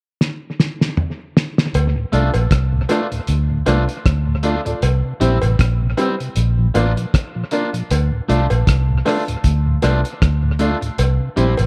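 This serious, hypnotic roots reggae excerpt opens with a muffled, cloth-damped drum fill at 0.2 s, its fat snare and tight kick gritty and touched by analog delay, before a round, foam-muted electric bass and a faint cowbell enter at 1.8 s, followed moments later by a soft, flute-like tonewheel organ on slow rotary speaker in the background, a slightly broken-up, twangy guitar with tape echo, and woody upright piano stabs over Dm, C and Bb chords in an echo-heavy mix.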